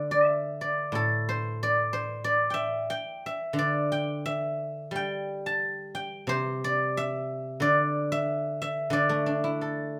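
A solo guzheng, played with fingerpicks and sitting up front, carries this elegant, flowing piece of Chinese traditional music across its full 10 seconds, its silvery, ringing tone spanning a broad range from low to high. The playing moves in a free, rubato 2/4, and light reverb adds a touch of space around the acoustic strings in this passage cut from a longer work.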